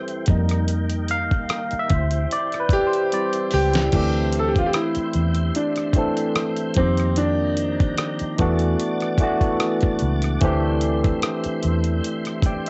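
R&B and neo-soul in a smooth, soulful mood, with a lightly swung 16th-note feel, cut from a longer piece. A barky tine electric piano, clean and run through a combo amp with subtle chorus and plate reverb, sits up front and carries the opening as a solo until 3.9 seconds, over a tonewheel organ holding sustained chords with key click, chorus vibrato and a fast rotary speaker. A gritty, compressed sampler-style drum kit with a thumpy kick, fat snare, hi-hat, rim click and crash plays a fill at 3.1 seconds. Alongside it, a dark, round, foam-muted electric bass sits up front. A clear, open concert grand piano with deep lows enters at 2.7 seconds to carry the melody, while the harmony moves through F9sus4, D9sus4 and E9sus4 chords. The whole has the light reverb and muffled top end of a home cassette recording, and the drums and grand piano carry an extra cassette-tape grain.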